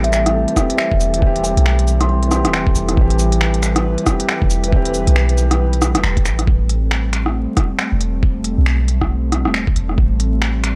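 Dry, gritty and crackling with vinyl noise, this ghostly, wistful future garage piece at 137 BPM in A minor, resting on an Am7 chord, opens with a woody kalimba melody through analog delay that stops at 2.7 seconds, a felt-muted upright piano that is soft and intimate with delay and sidechain pumping, a breathy detuned pad with chorus, a very quiet wind-like noise texture, a deep round 808-style bass, and a crisp up-front kit of cabasa, finger snaps, hi-hat and rim click, with a muffled, overdriven, thumpy kick arriving at 0.6 seconds, while piano and texture fall away at 6.5 seconds.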